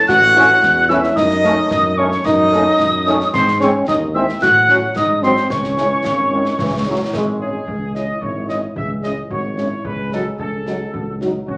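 A wet, large studio reverb surrounds this stern, martial excerpt of a military-style wind band march in C# minor, moving at 111 BPM in a straight 2/4. A clear, tight trumpet section carries the melody with light vibrato, while a pure, wooden-toned piccolo, tongued with vibrato, plays a high second line until about 7.4 seconds. A close-miked euphonium with a warm solo voice adds a further second line, and a punchy, mellow tuba anchors the bass. A French horn section with a smooth top sits in the background as accompaniment, and a distant, roomy trombone section holds sustained chords until about 7.6 seconds. Concert snare drum, concert bass drum and clash cymbals with a dark cymbal sound mark the march from a small room, and the harmony passes through chords such as D#m7b5/F#, G#7 and C#m before a second section begins at 7.7 seconds.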